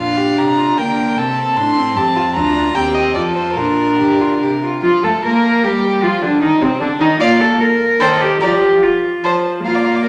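Bathed in a wet recital hall reverb, this brief, cheerful and graceful excerpt of a quick classical-period string quartet movement in Bb major moves in 3/4 at 140-155 BPM with a rubato feel, as a nasal, airy-bowed first violin carries the melody over a second violin's lightly vibrated line, an up-front reedy viola accompaniment and a close, period-style cello bass, the gut-string tone of the four players giving the graceful phrases an intimate, historically flavoured colour.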